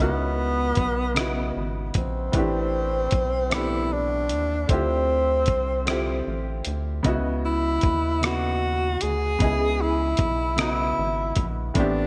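A slow, straight 6/8 pulse at 51 BPM drives this sultry, late-night R&B excerpt. A gritty, compressed sampler-style kit enters at 0.8 s with thumpy kick, hi-hat and rim click under gated reverb, beside a rubbery, hollow square bass that sits dark and up front. A breathy tenor saxophone carries the jazz-style solo melody with vibrato and scooped notes, while a clear baby grand piano accompanies over C#m11, Am11 and Dm11 chords. A break arrives at 5.9 s, all amid plate reverb and bright 1980s-style digital sheen.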